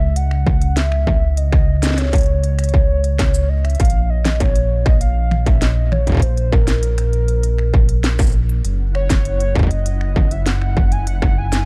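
Cerebral and eerie, this IDM excerpt moves at 99 BPM in 4/4 over C#m and F#7(no3) chords, with a deep, detuned saw bass rumbling up front beneath a warbling, mellow lead that is thick with chorus, tremolo and cassette-tape echo. A distorted, tape-warmed electronic kick punches forward, while an industrial kit of clanging snare, crisp hats, finger snaps, shaker and toms fills the groove. At 8.9 seconds a flickering, grainy texture slowly emerges far in the background, and the production stays dark and warm with little reverb.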